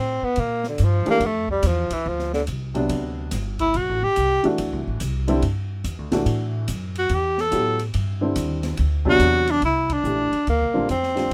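Hypnotic and open, this modal jazz passage swings easily in 4/4 and is taken from a longer performance. A breathy tenor saxophone carries the melody as a solo through the first section, its whispered, intimate tone shaped by vibrato, soft attacks and scooped notes with a smooth top. Upright bass plucks underneath from the start with a woody, steel-strung sound, and at 0.4 seconds an acoustic drum kit joins from a small room, with dark cymbals, a medium-tuned snare and a boomy kick sitting low in the mix. A mellow upright piano enters at 1.1 seconds, up front with short sustain and audible action noise, as the harmony moves between C9sus4 and D9sus4. A band accent lands at 9.8 seconds as the music turns to a new section, and the recording stays dry and close throughout.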